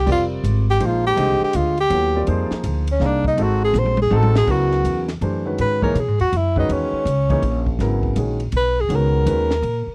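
A swung waltz pulse carries this hypnotic, spiritual modal jazz fragment, with a breathy tenor saxophone soloing up front throughout in a mellow subtone, using light vibrato, soft attacks and scooped notes. Woody pizzicato upright bass sits close beside it, while a natural-sounding grand piano comps underneath and a compact cocktail drum kit keeps time with a dark, rolled-off top, punchy kick and high-tuned snare. A drum fill at 3.7 s leads into a shift of tonal center at 4.5 s, all captured in a dry, close 1970s-style studio sound.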